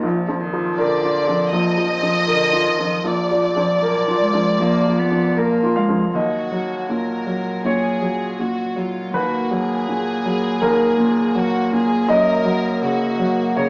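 A woody upright piano and a floating, pure-toned cello open this neoclassical excerpt together, the piano carrying the accompaniment up front while the single bowed cello sings a second line in soft sul tasto. At 0.8 seconds a chamber violin section enters with the melody, intimate and close, its light vibrato and smooth top giving a melancholic, longing voice over a rubato 80 BPM pulse in 4/4. The harmony settles into Eb minor at 6.1 seconds and moves to Gb at 12.1 seconds, with the players heard live in one room through a wet studio reverb and a small-speaker sound.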